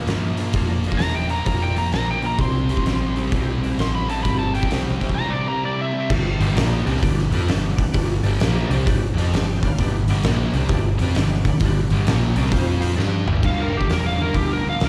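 Heard through a venue's PA with a recital-hall ambience, this short cut from a longer piece of blues rock and southern rock has a raunchy, swaggering feel and a swung 4/4 groove. Up front, a double-tracked fuzz guitar grinds out a thick riff with slapback echo over a round, foam-muted vintage bass and an oversized, low-tuned drum kit with a punchy kick, fat snare, toms, hi-hat and crash. The kit sounds gritty and saturated, set in a bright stone room. Behind them, an overdriven tonewheel organ holds full, sustained chords through a slow rotary speaker and chorus vibrato, with percussive third-harmonic attack and a brief fill at 8.9 seconds. An overdriven slide guitar, played with fingerpicks and carrying its own slapback echo, sings the melody until 6.1 seconds, then returns after a drum fill for a solo at 13.4 seconds that closes the passage.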